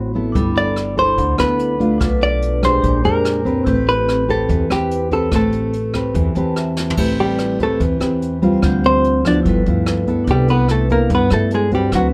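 A dark, clean hollow-body jazz guitar carries the melody up front in this intimate, melancholic bossa nova excerpt, turning to a solo at 7.0 seconds. A full-bodied, thumb-plucked nylon-string guitar with audible finger squeak shares the foreground, while a woody pizzicato upright bass and a brushed drum kit with dark cymbals and a boomy kick sit beneath it. A bright, airy vibraphone rings in the background with slow motor vibrato and adds a fill from 6.1 seconds, all within a light reverb.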